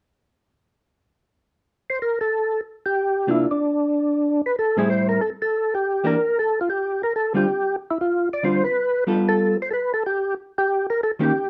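A dusky studio sound with moderate reverb frames this greasy, swinging jazz fragment at 186 BPM in C mixolydian, where a full, lightly overdriven percussive tonewheel organ, turning through a slow rotary speaker with chorus vibrato, carries the up-front melody from 1.9 seconds while a clean, dark, picked hollow-body electric jazz guitar accompanies it from 3.3 seconds over chords moving from C9sus4 through Am9 and Dmadd11 to G9 and Eb7.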